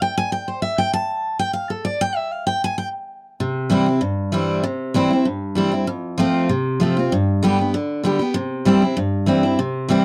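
Bluegrass in C major at a brisk 194 BPM, this joyful, virtuosic 10-second fragment of a longer piece features a picked steel-string dreadnought acoustic guitar, bright and full-bodied with fresh strings and sitting up front in a dry, close 1970s-style studio sound with light reverb, ranging from F2 to A5 as it opens with an unaccompanied solo passage before moving at 3.4 seconds into a new section over C, F and G chords that resolve back to C.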